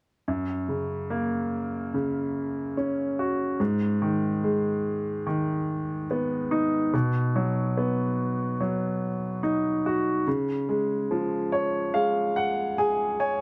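A bright grand piano opens the recording at 0.3 seconds, playing an accompaniment part that spans from the low register up into the upper octaves. This is a hopeful, heartfelt pop piece at an unhurried pace in a straight 4/4 feel, and the clip is cut from a longer work. The harmony moves through F#, G#m, B and C#, each chord held for a few seconds. The piano sits up front with a brilliant, natural tone, framed by a light reverb. Near the close, from 11.1 seconds, the piano plays a fill that carries through to the end at 13.4 seconds.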